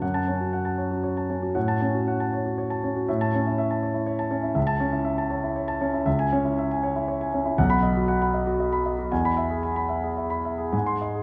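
A polished, present grand piano sits up front in a wet scoring-stage reverb with a 1.9 s tail, giving this short excerpt of a romantic solo character piece a rich, enveloping sound. In F# minor and 3/4 with rubato, the tempo breathes between 105 and 123 BPM. Spanning B1 to B#5, the piano carries a bittersweet, passionate mood as the harmony moves from F# minor through A and C# minor to B and finally E.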